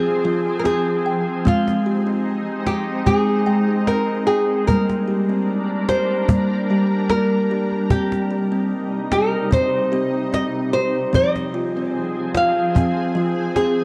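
A soft cassette-tape haze and a moderate spring reverb surround this gentle, meditative world piece, a short cut from a longer work in C minor at 74 BPM with a lightly swung 4/4 feel. A mellow, woody kalimba sits up front, its fingertip-plucked arpeggios ringing across the full 13.8 seconds. Beside it, a bright, fingerpicked nylon-string guitar carries the melody, sounding small and close, with an analog delay trailing its notes. Underneath, a shimmering, ethereal pad holds sustained chords with a slow attack, an octave-up sheen, detuned chorus and its own reverb. A close, dry cajon enters at 0.3 seconds, its faint snares adding texture as the harmony drifts from Fm through Ab, Gm and Cm before returning to Fm at 11.1 seconds.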